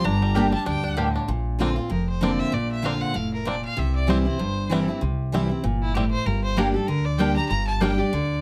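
Bluegrass with a lonesome, haunting mood, this brief swung excerpt runs over a minor-leaning progression that moves from Gm through Bbadd9 and C before settling back on Gm. A clear, biting fiddle with light vibrato carries the melody high above, alongside a twangy banjo played with fingerpicks that sings in a lower register. Up front in the mix, a full-bodied dreadnought acoustic guitar picks out the accompaniment, while a growly, woody upright bass played pizzicato anchors the low end. A double-strung mandolin adds short stabs near the start and again from 6.6 seconds. The close, detailed microphones and light reverb give the ensemble an intimate, present sound.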